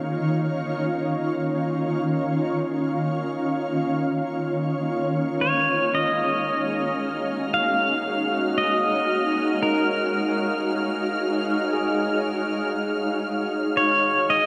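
A slow, straight 57 BPM pulse in 4/4 carries this melancholic, serene ambient piece in Eb minor, cut from a longer work and set in a vast, echoing cathedral-like space. An up-front, shimmering pad with a detuned, granular, octave-up glow holds sustained chords from Bbm/Eb to Ebm11, while a very quiet, clean tine electric piano plays arpeggios through a combo amp and gradually fades in from 5.4 s. At that point a twangy, compressed pedal steel guitar takes the melody with fingerpicked slide and volume swells in a diffuse delay, joined by a veiled, con sordino violin section adding a dark bowed texture high above, before the harmony settles on a rootless Bbm/Eb at 13.8 s.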